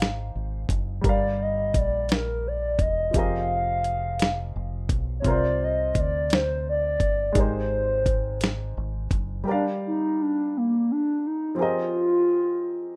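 A slow six-eight groove from a gritty, compressed sampler-style drum kit with a thumpy kick and a deep, round, punchy fingered electric bass drops out at about 9.4 seconds, leaving a dark, mellow baby grand piano with audible action noise beneath a hollow, woody clarinet-like synth lead with chorus and vibrato to carry this late-night, sultry R&B excerpt through jazzy ninth and eleventh chords in a rough home demo mix with light reverb, until a brief piano fill at 12.6 seconds.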